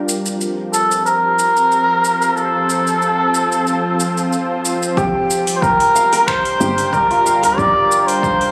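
Warm and meditative, this short organic downtempo excerpt in G minor moves at 92 BPM with a light 16th-note swing, as a nasal, detuned bowed-like drone holds pumping chords beneath overdriven deep house drums of finger snaps, metallic hi-hat and shaker, while a veiled, breathy cup-muted trumpet carries an up-front jazz melody through digital delay from 0.7 seconds, joined at 5.0 seconds by a shimmering hammered santur arpeggio and a punchy overdriven electronic kick, with a woody, round FM bass arriving at 6.6 seconds, all heard through a lush hall and club-like room captured on a phone.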